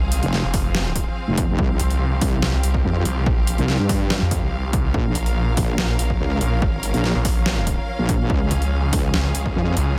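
A snarling, distorted saw bass and a chorused, wobbling bass drive this heavy, menacing half-time dubstep passage, with a punchy overdriven kick, a drum kit of deep snare and bright hats, and a clear bowed string section holding sustained chords that pump against the mix, all cut from a longer piece and moving through Fm, Csus4, Bbm and Db.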